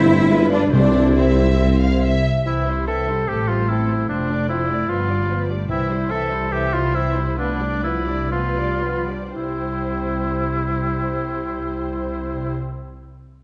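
Urgent and dramatic, this classical excerpt in C major moves in a rubato 4/4 at 112-152 BPM, with bowed violin sections, the lush first carrying a focused melody and the second a smooth second line, over rich violas and cellos, while a woody, dark double bass section sits up front, a mellow tuba and very quiet, round timpani on soft mallets sound only briefly at the opening, a warm vibrato oboe enters at 2.5 seconds as an up-front solo line, the music slows between 4.9 and 9.3 seconds, and a wet scoring-stage reverb gives the whole ensemble a spacious glow.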